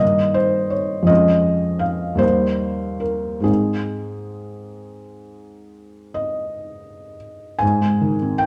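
A felt-muted upright piano plays alone from the outset, its soft, intimate tone sitting up front with audible action noise in this nostalgic, tender fragment of a romantic nocturne. The 9/8 phrase moves with free rubato, passing from Eb/G through Db/F and Eb before settling on Ab at 3.5 seconds, all within a span from Eb2 to Ab5. A moderate recital-hall reverb and a dark production frame the piano until it ends at 8.5 seconds.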